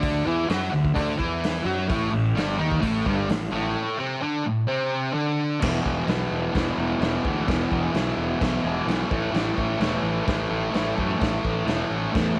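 Raw and rowdy, this garage rock clip from a longer piece drives along at 129 BPM in a straight 4/4, with a bright, double-tracked fuzz guitar riff sitting up front, distorted and compressed as it moves from Bmadd11 and Gsus24 into E5 at 5.6 seconds and A5 at 9.1 seconds. Underneath, a fingered electric bass growls with round, punchy overdrive and tube saturation, while an acoustic kit of kick, snare, hi-hat and crash sounds gritty and dark with a rolled-off top, its punchy kick and medium-tuned snare set in a bright stone room. Light reverb wraps the three parts, which play together from the start until about 12.4 seconds.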